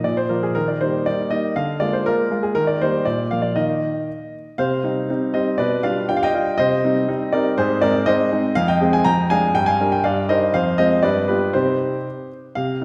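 In a straight two-four pulse, this playful, cheerful classical-period sonatina for solo baby grand piano has a clear, natural, up-front tone with short sustain, set in the wet reverb of a church or concert hall, and moves into a new section at 4.6 s before the fragment, cut from a longer piece, ends at 12.8 s.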